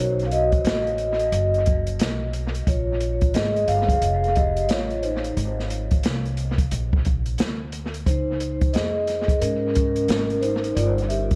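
Soft-mallet vibraphone leads this smoky, mellow jazz-hop excerpt, its ringing, up-front tone shimmering with slow motor vibrato and trailing dub echo as it solos across chords from B7 and Bbm7 to Abadd9 and Dbmaj9, with a break between 5.4 and 8.1 seconds. Beneath it, a dark, woody pizzicato upright bass holds the low end, and an acoustic jazz kit with a boomy kick, smooth hi-hat and medium-tuned snare joins at 0.2 seconds, its hits also carrying dub echo. The 89 BPM groove swings gently in 4/4, set in a light studio reverb within an echo-heavy mix.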